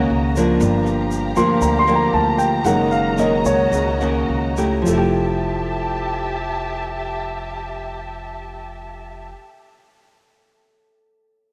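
In a straight 4/4 bossa nova feel at 102-120 BPM that slows from 0.6 to 4.9 seconds, this romantic, breezy fragment in F major opens with a polished, present baby grand piano solo over a fingerpicked, full-bodied nylon-string guitar, up front with audible finger squeak. A lush bowed string section sustains chords with vibrato and portamento, while a woody, growly pizzicato upright bass and a grainy, bright tube shaker, heard until 5.0 seconds, fill out the groove. The harmony moves from Gb6 through Gm7 and back to Gb6 before landing on Fmaj9 at 4.9 seconds, and the guitar, piano and strings carry a cassette tape tint within a home cassette recording bathed in a lush hall reverb.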